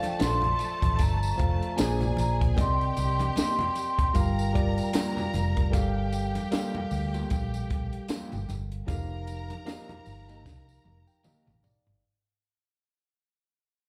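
Bittersweet and cinematic, this short cut from a longer piece is lush 1970s-style soul in G minor at a relaxed 76 BPM, with a gentle swing on the sixteenths. A vibraphone played with soft mallets carries the melody only through the first 5.3 seconds, its metallic, ringing tone shimmering with a slow motor vibrato and a slapback echo. Beneath it, a bowed violin section sings a lush second line with vibrato, while a mellow tine electric piano comps cleanly, both bathed in plate reverb and slapback echo. The compact cocktail kit brings a high-tuned snare and punchy kick with a dark, smooth character. Congas sit back in the mix alongside a jingly tambourine, and a slightly broken-up guitar through a small old amp picks a compressed riff with spring reverb in the background. A round, foam-muted fingered bass sits up front. The chords move from Bbmaj7 through Cm7 and Gm7 to F9sus4, and the whole band, heard through a club PA, fades out from 5.7 seconds as the drums and electric piano play fills from 10.5 seconds.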